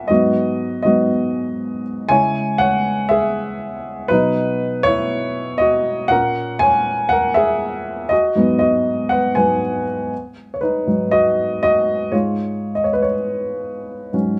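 A moderate studio reverb gives this recording the feel of a live room, with a dark upright piano placed up front. It is a short pop instrumental, cut from a longer piece, where the solo piano carries everything from 0.0 to 14.4 seconds. The tone is mellow and woody, spanning from G#2 to G#5, and the mood is bittersweet and earnest. The opening passage moves through G#m7, C#m, Badd9 and F#/A# before returning to G#m7. At 10.1 seconds the music shifts into a new section built on B and then C#/G#.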